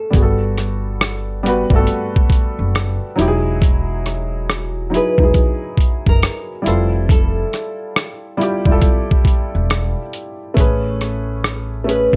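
Mellow and dreamy, this swung lo-fi hip hop fragment sets a fingerpicked, classical nylon-string guitar melody through a low-pass filter over soft, intimate felt-muted upright piano chords under the same filter, with a woody, dark pizzicato upright bass and a gritty, compressed, pitched-down boom bap sampler-style kit whose thumpy kick, hi-hat and rim click sit up front, inside a light reverb as the harmony moves from Gmaj9 through Emaj9 and Fmaj9 to Amaj9 at 10.6 seconds.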